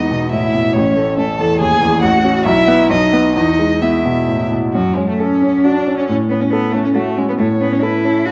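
A quick, cheerful classical-period movement for piano trio in 3/4 at 130-142 BPM, played with lively rubato, moves from E major into F# minor at 4.7 s, with a smooth, close violin singing the melody with vibrato up front, a focused, more distant bowed cello carrying the second line with vibrato, and a clear, present grand piano accompanying, the trio heard in a moderate recital hall reverb with a dark, warm production in this excerpt from a longer piece.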